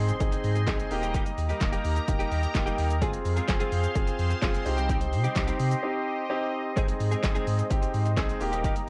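Worn, warbly cassette-tape drift colours this confident, energetic dance-pop excerpt at 128 BPM, where a punchy analog drum machine of handclaps, shaker, hi-hat, kick and snare drives a deep, round sine sub bass, a polished grand piano, a bright, detuned sawtooth pad with chorus and a clean, direct-recorded electric guitar riff with ensemble chorus, the piano, pad and bass pumping to the sidechain, while a very quiet electronic impact sounds at 0.1 seconds and a break arrives at 5.8 seconds over chords moving from Ab through Eb, Fm and Cm.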